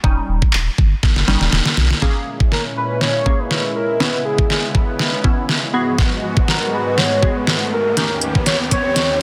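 A pop drum kit sits up front in this confident, bittersweet dance-pop track at 121 BPM in 4/4, its knocking kick, deep snare, crisp hi-hats and handclaps layered into a produced electronic sound, with a fill arriving at 1.0 seconds. A glassy, crystalline wavetable pluck carries the accompaniment with chorus and sidechain pumping, while a round sine sub bass pumps underneath only briefly at the start. From 2.0 seconds a build-up begins as a lush, thick, nasal pad of detuned sawtooth chords enters with a slow attack, and at 2.5 seconds a velvety, smooth synth lead with vibrato, a wave-folded edge and tape echo takes the melody. A riser sits in the background from 4.9 seconds as the harmony moves from D#7 through A#m7b5, C#m7 and G#m7 and back to D#7. Light reverb and a dense, heavily limited modern master give the whole track a tight, polished finish.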